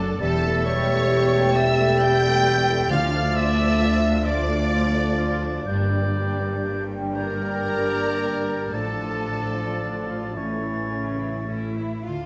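In a rubato 6/8 that sways at a slow 33-45 BPM in dotted quarters, this solemn, melancholic romantic movement for symphony orchestra unfolds in D minor, cut from a longer piece. A lush violin section carries the melody high in its range with vibrato and a soft attack, while a second, more focused violin line, an oboe with light vibrato and an airy flute add supporting lines. Beneath them a dark bassoon and a smooth, distant viola section fill in the accompaniment, a mellow French horn section holds sustained chords, and a bright trumpet section adds tight stabs until about 10.3 seconds. A concert harp rings out fingerpicked arpeggios across a broad span, and the bass rests on a warm, distant cello section and a close, lush double bass section. Round, soft-mallet timpani strokes on D sound between 2.9 and 4.2 seconds, as the harmony moves from A7/E through Dm, Gm and Dm/A to A, all bathed in a wet recital hall reverb.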